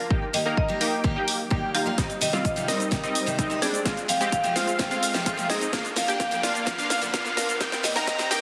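A dense, heavily limited mix bathed in lush hall reverb carries this emotional, powerful festival progressive house build-up at 128 BPM, cut from a longer piece and moving through Eb, Cm, Fm and Bb before returning to Eb. A woody marimba with vintage sampler grit carries the melody over a thick, detuned unison lead playing arpeggios, while a punchy supersaw stab riff with ensemble chorus sweeps through a low-pass filter, and both synths pump against the sidechain with digital delay. A picked dreadnought acoustic guitar with audible finger squeak adds full-bodied accompaniment from 0.3 seconds, a punchy, tape-warm kick and a house kit with cracking snare, hi-hat and shaker sit up front, a drum fill runs from 2.0 seconds, and a very quiet riser sits underneath throughout.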